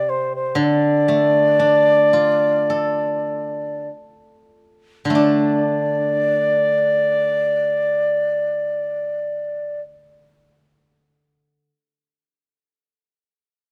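In a free, rubato 4/4 that slows through the opening 5.1 seconds, this graceful, tender passage of Chinese traditional chamber music sets an airy, reedy bamboo xiao melody with tongued, straight tone above the silvery, ringing accompaniment of a steel-string zither played with fingerpicks. A second section begins at 5.1 seconds, and the xiao falls silent at 9.8 seconds, leaving the zither to sound alone until 11.7 seconds. Close, detailed microphones and light reverb capture both instruments up front, in this fragment of a longer piece.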